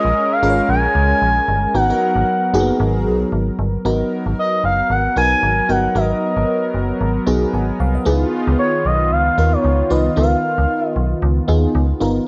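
An up-front, smooth sawtooth synth lead with chorus, slapback echo and vibrato carries the melody until 11.2 s in this slick, funky G# dorian excerpt at 114 BPM with a light swing on the sixteenths, over a metallic, digital FM bass, a lush, dreamy FM electric piano with chorus and phaser, and a brassy, bold analog pad holding sustained chords through A#m7, G#m9 and C#9 in a light reverb.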